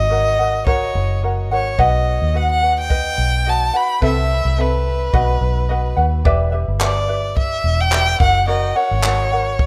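A light 16th-note swing lilts under this 108 BPM acoustic pop excerpt in 4/4, cut from a longer piece and carrying a reflective, wistful mood. A single bowed violin sings the melody up front, its rich, smooth tone shaded with vibrato and trailed by a touch of delay. A fingerpicked ukulele supplies gentle accompaniment from the start, while a vintage muted fingered electric bass sits up front and round, its dark, foam-muted, amped tone anchoring the low end. At 0.7 seconds a compact cocktail drum kit joins with handclaps and a dry, punchy kick. The harmony moves from F# through B and Amadd9/C before shifting to Em7 at 6.2 seconds and returning to F#, all set in light reverb with the rough feel of a home demo.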